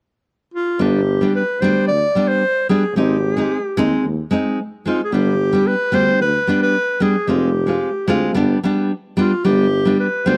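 A breathy, softly attacked clarinet opens this bittersweet, festive klezmer excerpt at 0.5 s with a clear, jazz-inflected melody and light vibrato, joined at 0.8 s by a full-bodied, fingerpicked nylon-string guitar and a vintage-sounding tuba whose scooped notes and vibrato anchor a G, Ab, G, Fm progression, all captured in a dry, close 1970s-style studio sound.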